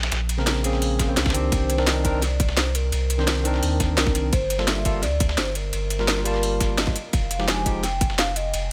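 A deep, round sine sub bass and a gritty, compressed sampler-style soul kit open this rolling, melancholic liquid drum and bass excerpt at 171 BPM in C minor. The soul kit's hi-hat, ride cymbal and medium-tuned snare are filtered and set in studio reverb. A second, layered electronic kit adds a cracking snare and crisp hats. A barky tine electric piano, lightly overdriven through a combo amp and fed into delay, enters at 0.4 seconds over a Bbm9 chord. A tight, tape-warm electronic kick arrives at 1.0 seconds. At 1.5 seconds a hollow, woody square-and-triangle synth lead with a noise layer carries the melody, dark and soft with vibrato, analog chorus and digital delay, as the harmony moves through Cm9, Gm9 and Fm9. The up-front sub bass sits beneath it all, mellow and sustained, while a digital ambience surrounds the mix.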